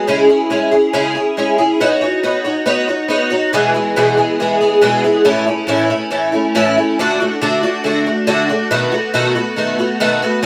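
Open-road and nostalgic, this short rock passage at 139 BPM in 4/4 with a straight feel sits in E major and is cut from a longer piece. A lone picked twelve-string acoustic guitar carries everything, ranging from E2 to C#5 and sitting up front in the mix. Its tone is boxy and parlour-sized, with octave-doubled strings that shimmer, further colored by ensemble chorus and analog delay. The opening moves from C#m to Badd9, then from 3.5 seconds the harmony steps through E, A, D and B7. A light reverb gives the guitar a little space around it.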